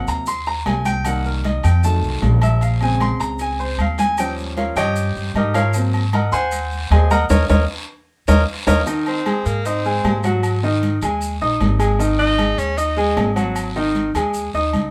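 A sophisticated, danceable Afro-Cuban jazz excerpt at 154 BPM opens with a warm, natural baby grand piano soloing up front over woody, thumpy pizzicato upright bass and raspy guiro, with grainy maracas, ringing agogo bells and timbales, and bright, damped congas set in the background, and after a band accent at 7.3 seconds an edgy, punchy tenor saxophone with scooped notes and vibrato takes the lead at 9.1 seconds.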